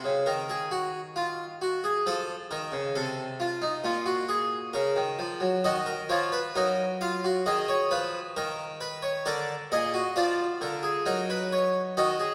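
In a straight 4/4 at 67 BPM, this contemplative, solemn passage from a baroque-style three-part fugue in E-flat minor, tuned to A4 = 438 Hz, features a solo Flemish-style harpsichord, plucked and full-bodied with two sets of strings, sitting up front across a range from Bb2 to F5, while a wet concert-hall reverb of 1.9 seconds surrounds chords moving from Ebmadd9 through F, Bbm and Fm7b5/Eb to Ebm/Gb before the cut at 12.3 seconds.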